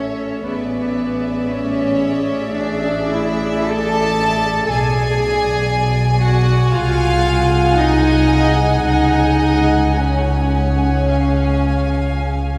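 Classical music for string orchestra, this slow romantic movement is elegiac and yearning, moving in 4/4 at roughly 53-60 BPM with a flexible, rubato feel. Two violin sections carry the upper lines throughout the 12.6 seconds: one sings the melody in a narrow high range while the other weaves a second line, both bowed sul tasto with a soft attack and a pure, floating, close tone. Beneath them the viola section supplies accompaniment with a smooth top, and a chamber cello section, also played over the fingerboard, shares the bass role. The double bass section anchors the lowest register with a dark, woody, lush sound shaded by vibrato. The harmony drifts from E7/A through G#m7b5/B and G#7/B# to a C#sus4 that settles onto C# at 11.1 seconds, all bathed in a long church reverb that gives the excerpt a warm, shadowy glow.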